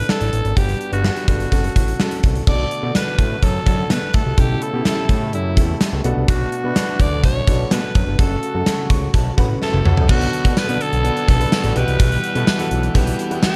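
A raspy, gritty alto saxophone carries the melody with a present tone in this urgent, moody slice of 1980s-style pop, its scooped notes giving the line an edgy, punchy bite. Beneath it, a gated drum kit sits up front with a punchy kick, medium-tuned snare, bright cymbals, tambourine and toms, set in a bright stone room, while a fat, saturated analog bass built from detuned sawtooth and square waves adds a thick, nasal low end. A warm, open baby grand piano plays accompaniment throughout and steps forward with a fill just before a drum fill leads into the final stretch at 10.1 seconds. From 2.5 seconds a brassy, bold analog pad with chorus and vibrato holds sustained chords in the background, its soft attack blooming through a filter swell. At 10.1 seconds a very quiet, overdriven stack guitar joins, bright and picked, and the whole passage sits in light reverb and small room ambience, cut from a longer piece.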